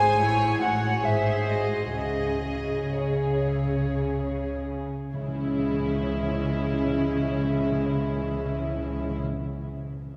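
Solemn and yearning, this classical passage in C# minor moves in a rubato 3/4 at 51-76 BPM, slowing over its first 5.1 seconds through A, G#7 and C#m, as a floating, pure violin section carries the melody while a second violin line and a mellow, hollow, distant silver flute trace a countermelody, a viola section with light vibrato fills the middle, all strings bowed sul tasto, a thumb-plucked concert harp rings out arpeggios low in the mix, dark double basses and a warm cello section ground the bass, and timpani with medium mallets join in the background at 5.1 seconds, the whole bathed in a wet cathedral reverb.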